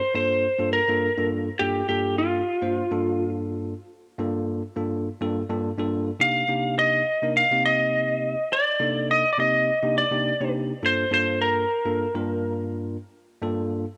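Blues in a smoky, brooding mood with a light swing, where a lightly driven lead guitar, dark and slightly broken-up, carries the picked, compressed melody up front until 12.5 seconds over a bright, bell-like tine electric piano accompaniment that moves from Gm7 to Cm7 and back, all set in a moderate plate reverb in this short cut from a longer piece.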